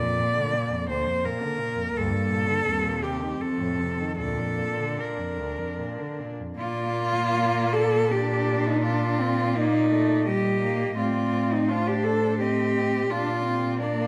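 A focused, up-front bowed cello carries the second line beneath a smooth, vibrato-rich solo cello melody, while a third cello supplies accompaniment and a fourth plays the bass sul tasto with a soft, airy attack, forming a serene, tender classical piece for cello ensemble in Bb major, in 3/4 at a rubato 73-87 BPM, set in a moderate recital hall reverb and cut from a longer work.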